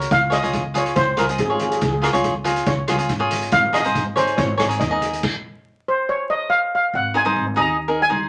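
A straight 4/4 calypso groove at 141 BPM drives this sunny, carefree excerpt. A street-band drum kit with a boomy kick, hi-hat, rim click and dark crash cymbal plays until 5.3 seconds, while ringing, hard-handed congas sit in the background. Up front, a shimmering lead steel pan played with medium rubber sticks solos over crisp, picked cavaquinho and woody pizzicato upright bass, moving from Db to Absus4 through a stop from 5.2 to 6.9 seconds, then settling on Abadd9 in a moderate club reverb with a layer of vinyl crackle.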